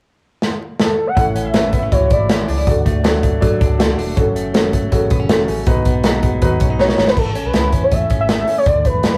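A velvety, detuned synth lead with chorus, vibrato and gliding portamento carries the melody in this nostalgic, breezy slice of jangly indie pop, appearing from 0.8 seconds and returning near the close at 6.8 seconds. A modern studio drum kit sits up front with bright cymbals, a punchy kick and a medium-tuned snare, opening with a fill and rolling another into the final passage. From 1.2 seconds a clean, direct-recorded electric guitar picks compressed arpeggios while a dark, foam-muted fingered bass adds a round, punchy low end beneath a chord movement through A, D, F#m and B. An intimate upright piano with woody tone and audible action noise fills out the middle stretch as accompaniment. Light reverb, a rough rehearsal-room character and vinyl crackle give the cut from a longer piece a worn, homespun sound.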